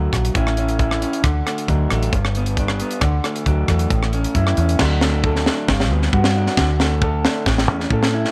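A straight 4/4 pulse at 135 BPM drives this short, sunny highlife guitar band clip in D major, cut from a longer piece and built for dancing. A tight funk drum kit sits up front with a high-tuned snare, a tight kick, hi-hat, rim click and crash cymbal, captured with an acoustic, small-room, mid-forward sound. Underneath, a deep dub fingered electric bass plays low between G1 and A2, dark, round and foam-muted, heard direct and amped. The accompaniment comes from a picked electric guitar through a small old amp, slightly broken-up, compressed and lo-fi, ranging from G2 to A4. The chords move A, D, G, D and A before a second section at 4.8 seconds brings in a Gmaj7, and the dry recording keeps all three parts close and present through the final chord at 7.5 seconds.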